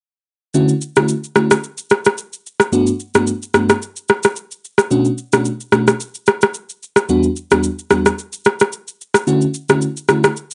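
Sunny and romantic, this short afrobeats excerpt at 110 BPM, with a light 16th-note swing in D major, sets an up-front, bell-like FM electric piano, sparkling and full-bodied with a mellow chorus, moving through Dmaj7, Gmaj7, Bm7 and Em9 before returning to Dmaj7, over a tape-warm electronic shaker and rim click, in light reverb on a lo-fi home cassette recording with a softened top end.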